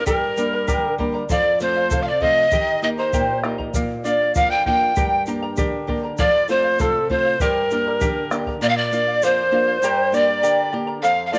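A breathy, reedy pan flute carries the melody up front in this short cut from a longer Andean folk piece, its bamboo tone marked by vibrato, a soft attack and a touch of chiff. Behind it, a close-miked alto recorder with a bright wooden edge plays a second line in the same range, adding its own vibrato. A fingerpicked charango shimmers through its double strings, some doubled at the octave, while a small-sounding, fingerpicked nylon-string guitar holds the lower accompaniment in a straight 2/4 feel. A round, vintage-sounding bombo thumps along until 8.6 seconds, and a grainy tube shaker runs throughout. Light studio reverb frames a mood that is festive yet melancholic, moving through minor-key changes that circle back to G minor.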